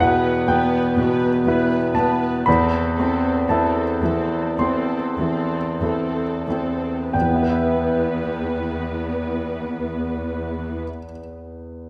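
This is a romantic classical movement for piano and orchestra, cut from a longer work, with a brooding, tragic mood and a free, rubato pulse that slows through its first 7.1 seconds. A concert grand piano carries the melody up front, its tone clear and polished, with deep bass, long sustain and the intimate sound of its action audible. Beneath it, a viola section supplies lush, bowed accompaniment with smooth, even vibrato. A cello section sits on a single low bass note with a close, rich ensemble sound. The strings stop at 10.8 seconds, leaving the piano to finish alone until 11.9 seconds, all within a moderate concert hall reverb that lends a natural sense of space.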